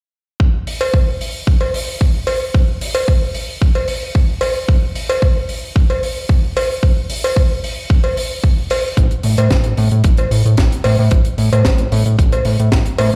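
Nu-disco at 112 BPM in a straight 4/4, this short cut from a longer piece carries a cosmic, sleek mood. A punchy, layered electronic kick drum sits up front from 0.4 seconds, joined by a dry, tight funk kit with hi-hat and a high-tuned snare. A cowbell part, with egg shaker and group handclap captured in a live room, also sits up front in the mix. At 9.0 seconds a fat analog bass enters, thick and detuned, blending sawtooth and square waves with a filter sweep, a moving notch, a fast attack and tube saturation. The whole track sounds as if played on a big sound system in a bare room, with light reverb and a stone-room reverb around it.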